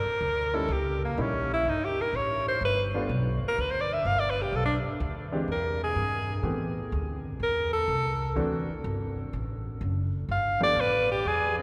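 Relaxed, playful small-group swing and bop jazz, cut from a longer piece, in which a punchy, forceful alto saxophone with vibrato takes an up-front solo from 0.0 to 11.6 seconds over a woody, thumpy pizzicato upright bass and a clear grand piano of short sustain that comps from 0.5 to 10.7 seconds, all set in the long, wet reverb of a cathedral-like hall.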